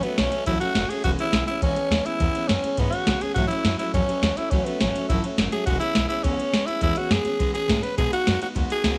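A straight 4/4 pulse from a soft vintage rhythm box, its deep kick, crisp snare and ride cymbal sitting up front, drives this retro, upbeat rockabilly excerpt, where a raspy, growling tenor saxophone carries the melody with vibrato over full-bodied picked steel-string acoustic guitar moving through A6, E6 and B6 chords and a woody, thumpy pizzicato upright bass, in a light studio reverb.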